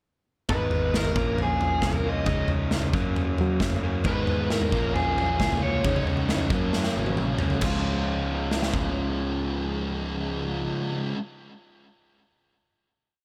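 Lightly reverberant and upfront, this short, upbeat indie rock piece moves at 135 BPM in Db mixolydian with a jangly feel. A nasal, dark lead guitar with a parked wah, overdrive and digital delay plays hook phrases over bright, ringing overdriven chords, a growly picked bass locked to the punchy kick, and a big-room acoustic kit with bright cymbals and grooving toms. A thick fuzz guitar with lush chorus and delay joins at 4.0 s, and after a drum fill the guitars and bass settle on a closing Db chord at 7.6 s.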